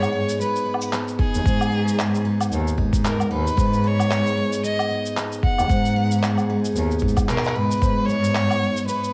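An intimate, autumnal piece of folktronica, this short cut from a longer work moves at 113 BPM in 4/4 with a gentle swing on the sixteenths, settled in G# minor before shifting to B at 7.8 seconds. A bowed violin carries the melody up front, focused and smooth at the top with vibrato, its line trailed by tape echo. Beneath it, a bright, full-bodied dreadnought steel-string guitar picks arpeggios with audible finger squeak, roughened by vintage 12-bit sampler grit. A single bowed cello supplies the bass with expressive vibrato and portamento, sounding at once distant and close. Sampler-style woodblock, shaker and handclaps, compressed, pitched down and muffled, run throughout, joined from 1.2 seconds by a thumpy electronic kick re-recorded in a large room. Light reverb, small-room ambience and vinyl crackle frame the whole, giving it a homespun, lived-in air.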